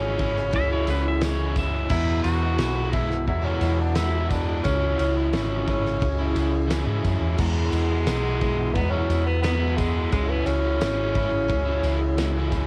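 A dry home-cassette sound frames this jangly folk and heartland rock excerpt at 88 BPM over C#m and Eadd9, where a clear, distant tenor saxophone carries the melody above a shimmering, octave-doubled twelve-string acoustic guitar, a crunchy double-tracked overdriven guitar riff, a round, up-front hollow-body bass and a faint rotary-speaker organ, joined at 0.2 s by a loose indie drum kit with a fat snare and dark cymbals and a jingly tambourine in the background, while a twangy pedal steel guitar adds a brief second line from 0.6 to 1.9 s.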